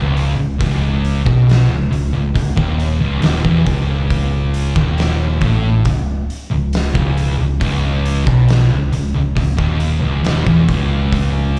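In a straight 4/4 feel, this heavy, ominous stretch of stoner and doom metal is cut from a longer piece and holds to a single section throughout. Two thick fuzz guitars play the riff: one sits up front with a dark, distorted, picked tone, while the second adds a dark, distorted, picked layer of fuzz further back in the mix. Beneath them, a hollow-body short-scale electric bass is fingered with an amped, round overdriven sound. An oversized, low-tuned drum kit joins at 0.2 seconds with hi-hat, a punchy kick and a fat snare, its smooth yet gritty, saturated character ringing in a bright stone room. The whole performance comes across as a live gig heard through the venue's PA, with light club reverb around it.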